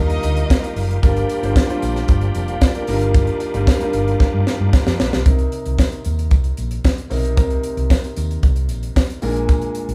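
A tight, dry funk drum kit with a high-tuned snare drives this glamorous, danceable disco excerpt in C minor at 114 BPM, joined up front by a round, dark hollow-body fingered bass, a concert grand piano with deep bass and long sustain, a bright, lightly overdriven tonewheel organ with chorus vibrato and key click holding chords through the first half, a lush bowed string section heard only in the opening 0.7 seconds, and a very quiet jingly tambourine, all in a lightly reverberant live-room sound, with a drum fill from 4.2 to 5.3 seconds carrying the Ebmaj9/G harmony into Cm7.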